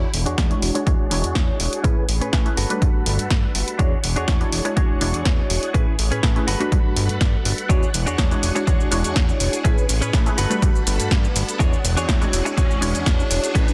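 A funky, detuned polysynth comp, a clean direct-recorded electric guitar riff with vibrato and a fat sawtooth bass open this joyful, feel-good filtered disco house excerpt, soon joined by a swirling vintage string machine in the background, a tape-warm analog drum machine playing cabasa, hi-hat and a punchy snare, and an up-front electronic kick from 0.4 s. The pumping synths, guitar and bass move through a low-pass filter sweep over E13, Amaj9 and Gmaj9 chords, and a background riser enters at 9.5 s to push the build-up under a dense, heavily limited master.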